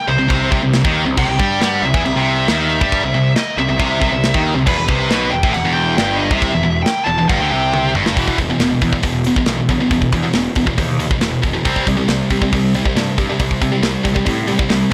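Relentless and dark, this heavy metal excerpt drives a bright, double-tracked high-gain rhythm guitar riff up front over growly, fuzz-laden picked bass and a tight metal drum kit with china and crash cymbals, hi-hat, snare, toms and a clipped kick, while a dark, distorted lead guitar with delay carries the melody until 7.9 seconds, a drum fill at 7.7 seconds ushers in the second section, and the whole thing sits in a small, blown-out room sound.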